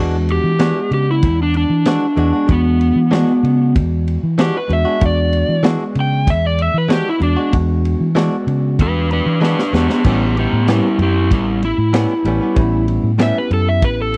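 A straight-eighth soul blues groove in 4/4 at 95 BPM, driven by a crunchy breakbeat drum kit with dark cymbals and a punchy kick, anchors this soulful, swaggering excerpt in E mixolydian, with a round, up-front fingered electric bass and a drum fill from 9.4 to 10.1 s leading the harmony from E9 to A9. An overdriven slide guitar carries the melody as a solo, while a bell-like tine electric piano supplies bright accompaniment and a clean, compressed direct-recorded electric guitar adds stabs treated with spring reverb. The sound is dry and close, in the manner of a 1970s studio recording.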